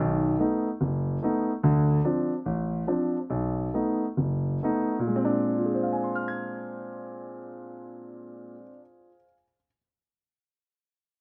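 Solo jazz on a concert grand piano, playful and warm, swinging in four with a loose, lilting feel across this short cut from a longer piece. The piano sits up front with a natural tone and deep bass, ranging from F#1 to Ab6, easing into a slowdown from 1.6 to 5.1 seconds before a new passage opens there. Its harmony moves from B7 through Dm7 back to B7 and settles on Bb9, in a dry, close sound that carries little reverb.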